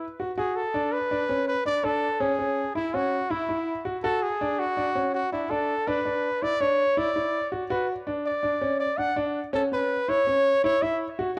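A punchy, forceful jazz-style trumpet solo with light vibrato, scooped notes and tape echo leads this driving, tense progressive instrumental excerpt in 5/4, entering at 0.4 seconds over intimate grand piano arpeggios with audible action noise, both parts up front in a small, reverberant room with a dark production as the chords move from Bmadd9 to C#m7.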